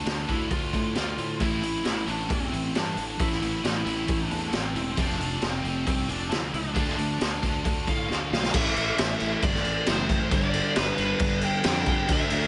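Hard rock with a menacing, aggressive drive, this short cut pairs a dark, overdriven lead guitar carrying the melody with slapback echo over a bright distorted guitar riff that drops out at 8.5 seconds, a dark hollow-body semi-hollow guitar riffing in the background, a growly fuzz-laden fingered bass, and an up-front, gritty garage drum kit with a boomy kick and medium-tuned snare whose fill at 8.1 seconds leads into a new section, all in a lightly reverberant studio sound with a rolled-off top.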